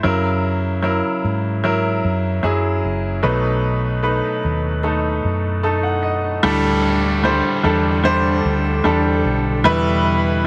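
A bright, woody upright piano with audible action noise and a round, punchy hollow-body electric bass open this melancholic, longing 75 BPM pop ballad excerpt over F#7 and B7, the piano adding a fill at 5.2 seconds before a background electronic downlifter enters at 6.4 seconds and a very quiet, glassy FM pad with slow attack and ensemble chorus joins at 7.2 seconds over Dsus4 and Em, all in a light digital reverb.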